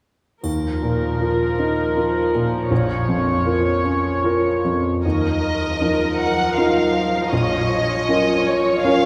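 A rich, intimate violin section enters at 5.0 s to carry the melody, its bowed sul tasto tone shaped by a soft attack and light vibrato. Beneath it, a natural-sounding baby grand piano with short sustain and a pure, floating viola section, also played sul tasto, accompany throughout over a gentle alternation of Ebsus2 and Bbm chords, while a bright triangle glints in the background until 1.9 s. This fragment of a tender, moving cinematic film score unfolds in a rubato waltz-time feel, set in a wet, spacious church reverb.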